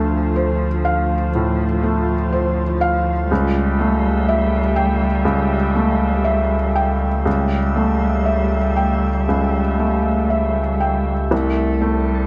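Closely miked with light reverb and fine detail, this fragile, melancholic neoclassical piece, cut from a longer work, drifts at a rubato 60 BPM in 4/4: a soft, felt-muted upright piano sits up front over a deep, round sine sub bass, a distant bowed cello sings a rich second line with vibrato and portamento, and a glassy FM pad holds ethereal chords through ensemble chorus and its own reverb, moving from Dm7 to A7/C# at 3.3 seconds and a rootless F/C at 11.3 seconds.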